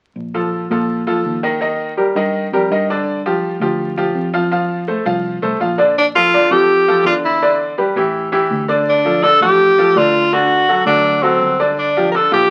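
A brisk 165 BPM salsa groove in Bb major opens this sunny, festive fragment, where a round, foam-muted fingered electric bass and a brilliant, up-front grand piano with short sustain set the pace from the start before a bright tenor saxophone with light vibrato and scooped notes takes the pop-style solo melody at 6.0 seconds, all heard through a wet small room and the crackle of a very old 78 rpm record.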